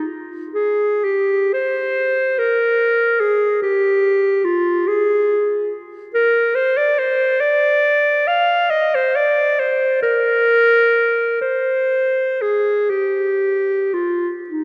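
A clear, smooth-topped clarinet sings alone and up front throughout this brief classical passage, moving between Eb4 and F5 in a free, rubato 6/8 with a nostalgic, lyrical mood. The solo line sits in a dark production bathed in a long, wet church reverb, and the clip is cut from a longer piece.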